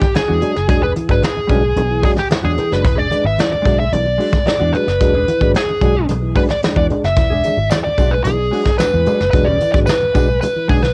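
Funk in E mixolydian at 111 BPM in a straight 4/4, this short cut from a longer piece struts with energy over a single E9 chord. Up front, a nasal lead guitar with a parked wah carries the melody between G4 and E5, its picked, overdriven tone colored by tape echo and cassette wear. Soft brush drums sit equally forward, with a punchy kick, a medium-tuned snare and hi-hat roughened by vintage 12-bit sampler grit. A muted fingered electric bass enters at 0.3 seconds, round and dark, while a mellow tonewheel organ adds lightly overdriven stabs through chorus vibrato and a slow rotary speaker. Further back, a clean, compressed electric guitar shimmers under lush chorus, low-tuned congas thump very quietly with soft hands, and a jingly tambourine appears from 7.4 to 10.5 seconds. Light reverb and a homespun cassette sound give the whole a lo-fi, lived-in character.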